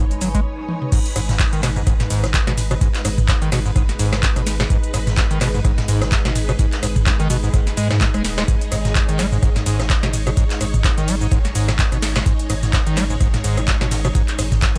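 A swung sixteenth-note groove in 4/4 drives this hypnotic acid house excerpt, cut from a longer piece and sitting on a single minor chord throughout. An overdriven electronic kick with a deep, analog thump anchors the pulse, while an up-front analog drum machine, overdriven and booming, adds a crisp snare, metallic hats, handclaps, rim clicks, cabasa, toms, ride and crash. After a brief break and a drum fill, the drop lands at 0.9 seconds, and a very quiet jazz brush kit on hi-hat and snare joins from a distant, roomy space. The overdriven acid bass carries the riff with a squelchy, gritty square-wave tone, resonant filter sweeps, tube saturation, analog chorus and digital delay, pumping against the kick alongside a round sine sub bass. Above them, a lush vintage string machine holds sustained sawtooth chords with a sub octave, soft attack and ensemble chorus, also pumping in time. The mix is dry and driving, with the top end rolled off above 10.4 kHz.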